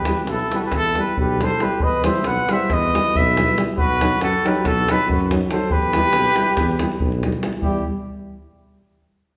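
Balkan brass band folk in 9/8, this restless, bittersweet excerpt from a longer piece moves at 278 BPM counted in eighths, gathering speed as it goes, in E harmonic minor. An up-front trumpet carries the melody with a mellow tone and light vibrato, while a flugelhorn, distant and roomy, shapes a second line beneath it. A tuba with a smooth top anchors the bass, and two euphoniums fill out the accompaniment, one mellow with vibrato and the other sitting warm in the background, all played in a classical style. A tight, compressed davul drives the percussion with a saturated bite. The harmony moves from Em to B at 3.8 seconds and back to Em at 5.7 seconds, and the band plays until 7.8 seconds, with a new section arriving at 7.6 seconds. The ensemble sounds as if captured in a church or concert hall, bathed in a recital-hall reverb.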